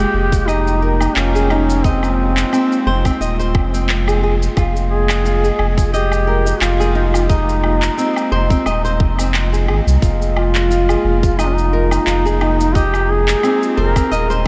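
Soaked in a huge, dreamy reverb, this hypnotic, earthy stretch of organic downtempo, cut from a longer piece, rests on a single Fm11 chord with a lightly swung groove. A vintage-toned duduk sings a folk-style melody with vibrato, scooped notes and a touch of delay, while a fingerpicked flamenco guitar, finger squeaks audible, spins arpeggios through analog delay over a dark, warbling lo-fi pad that pumps with sidechain and shimmers with chorus. A deep, round sine sub bass sits up front, and from 0.3 s a tight, tape-tinged electronic kick joins electronic shaker, woodblock and handclaps, both re-recorded in a large room.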